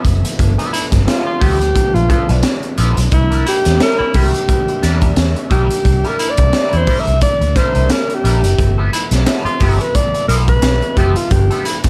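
A breathy, subtone alto saxophone with vibrato and slapback echo carries the melody from 1.1 s, riding a strutting, energetic funk groove at 88 BPM in G mixolydian with a swung sixteenth-note feel. Gritty, up-front breakbeat drums with a high-tuned snare and tight kick sit beside a dark, round, foam-muted fingered bass, while a twangy electric guitar on the edge of break-up plays accompaniment through wah and a clear baritone saxophone adds a second line. In the background, a reedy, lightly overdriven tonewheel organ with key click and slow rotary speaker sustains G13 and C9 chords, and a very quiet, hollow group handclap appears at 9.3 s, all within light reverb in a passage cut from a longer piece.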